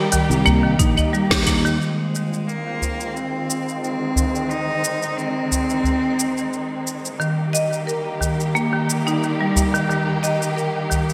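Warm and earthy, this organic downtempo excerpt in F minor moves at 89 BPM with a light swing: a biting, up-front cello carries the delayed melody until 6.9 seconds over distant, bowed studio strings whose sustained chords pump and pass through a low-pass filter sweep from 1.8 seconds, while a woody hard-mallet marimba plays percussive, delayed arpeggios that drop out and return at 7.2 seconds, a deep house kit of claves, smooth hats, shaker and snare with gated reverb joins a close, dry udu, and a round, punchy fretless bass and a layered electronic kick appear only briefly near the start around an accent, the mix sitting in a lush hall reverb with a bright 1980s-style digital sheen.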